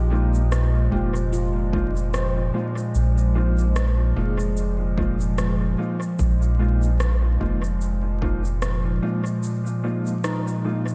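A warbling, nostalgic tape-like pad holds a Bb7sus4 chord with chorus and its own reverb, joined at once by a round, soft dub sub bass up front and a ringing, airy handpan playing arpeggios under a diffuse ambient delay in the background, all over a bed of vinyl crackle and light reverb. This hazy, peaceful ambient dub moves at 74 BPM in 4/4 with a 16th-note swing, as a dark, clean electric guitar adds compressed stabs through lush chorus and dub echo, and an overdriven electronic shaker and rim click, re-recorded in a large room, trail dub echo of their own. A deep, overdriven electronic kick sits in the background from 0.9 to 8.4 seconds, and the sub bass drops out at 9.0 seconds in this short cut from a longer piece.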